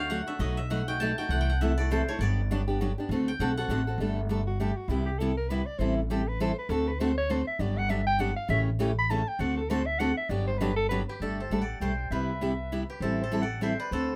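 A bright, dry koto plucked with fingerpicks opens this playful, lively jazz manouche fragment in 3/4 swing over a warm picked steel-string acoustic guitar and a dark, thumpy gut-strung upright bass, then a mellow soprano saxophone with light vibrato and a smooth subtone top comes in at 4.5 seconds to take the solo before the koto returns at 11.1 seconds, all in a light reverb.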